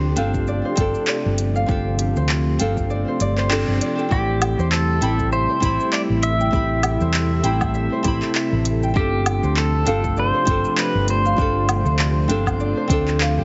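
A swung 16th-note groove at 99 BPM in 4/4 drives this smooth, wistful sunset chillout piece in A minor: a layered electronic kick and a produced deep house kit of smooth hi-hats, handclaps, shaker and woodblock sit under a dark, round hollow-body electric bass up front. Fingerpicked nylon-string guitar and bright, ringing thumb-plucked Celtic harp arpeggios, both with delay, float over silky, vintage string-machine chords with ensemble chorus in the background, moving from G9sus4 to Am7 and back, while the kick drops out from 2.9 to 4.1 s around a band accent. At 4.1 s a twangy, clean pedal steel guitar with delay takes the melody up front with slide and volume swells, all set in light digital reverb and a heavily compressed, radio-like sound.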